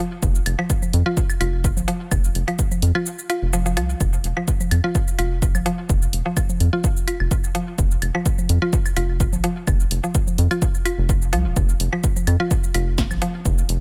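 A rubbery, hollow square bass sits up front with sidechain pumping beneath a woody, mallet-like synth pluck riff carrying chorus and dub echo, while a punchy electronic kick, a house kit of hi-hat, shaker and snare, and tape-echoed woodblock, claves and congas drive this hypnotic, cool minimal techno cut at 127 BPM in F minor with a 16th-note swing, pausing for a brief break at 3.1 seconds, all in a digital ambience.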